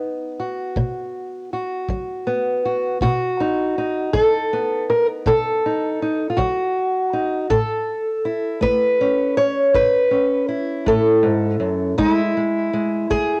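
A fingerpicked old ladder-braced acoustic guitar sits up front and carries the melody, its dark, woody, boxy tone colored by old strings, cassette tape and a touch of plate reverb. This is acoustic country blues in 12/8 with a straight feel, rollicking yet laid-back in mood. A kick drum enters at 0.8 seconds, set lower in the mix, with an airy, polished, punchy character and brushes. The chords move from B to A at 7.5 seconds and on to E at 12.0 seconds. The whole thing has the intimate feel of a home recording on cassette in a modest booth, and this passage is cut from a longer piece.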